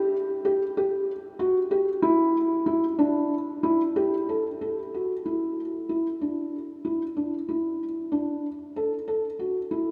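Set in an uneven 7/8 metre with a straight feel, the music moves at 189 beats per minute counted in eighth notes, giving this short excerpt of contemporary instrumental music a restless pulse beneath its pensive mood. A felt-muted upright piano plays alone for the full 9.9 seconds, staying within a narrow middle register from D4 to A4. Its tone is soft, dark and intimate, with thick felt dulling the hammers and the mechanical noise of the action clearly audible, as though the listener sits close to the instrument. That close, present sound is set against a very wet cathedral reverb with a decay of 4.9 seconds, so each note blooms into a large church or concert-hall space. The passage falls into two parts, with a new section beginning at 4.3 seconds, and the tuning sits slightly low at A4 = 439 Hz.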